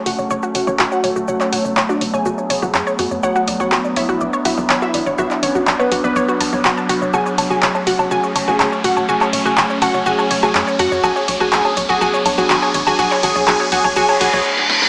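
A punchy, tape-warm analog drum machine sits up front in this driving, melancholic melodic techno excerpt at 123 BPM in F# minor, its handclaps, hi-hats, shaker, snare, toms and woodblock building toward a fill at 14.6 seconds while a riser enters at 3.5 seconds and a reverse cymbal closes the passage. A round, detuned analog pluck arpeggio, a thick, nasal unison lead with vibrato and a glassy, crystalline wavetable pluck in the background all carry filter sweeps over a tight sawtooth sequencer bass, moving between F#m and Bm. An evolving, warbling wavetable pad holds sustained chords beneath it all, and the whole is wrapped in a wet digital room with a small-speaker sound.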